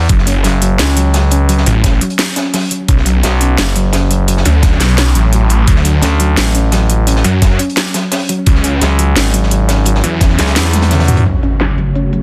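A dense, heavily limited digital mix with a faint mains hum carries this futuristic, aggressive excerpt of dark technical drum and bass in F# minor at 172 BPM, where a thick growling FM bass and a snarling, detuned, overdriven saw bass drive an F#m–Bmadd9–D–C#m progression beneath a knocking electronic kick, an up-front kit with a cracking snare and crisp hats, a gritty, high-tuned breakbeat layer, and soft round pluck arpeggios with chorus, delay and sidechain pumping, before a drum fill at 10.7 seconds gives way at 11.3 seconds to an electronic impact and an evolving, bright resonant pad.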